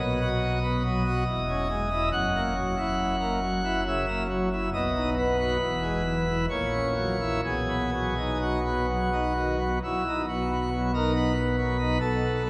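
A full pipe organ plenum opens the recording at once, its bright mixtures ringing through a serene, reverent chorale in a flowing triple metre. The solo organ spans from deep E1 pedal tones up to F#5, and its brilliant, romantically voiced sound sits up front in the instrument's own balance. Around it, a cathedral reverb about 5.5 seconds long lets each chord bloom and hang, and the listener seems placed well back in the room. The phrasing breathes with a free rubato, moving through a simple hymn-like progression that settles back home on the tonic chord at 7.4 seconds. A second statement of the opening phrase begins at 10.3 seconds before this short excerpt, cut from a longer piece, ends at 12.5 seconds.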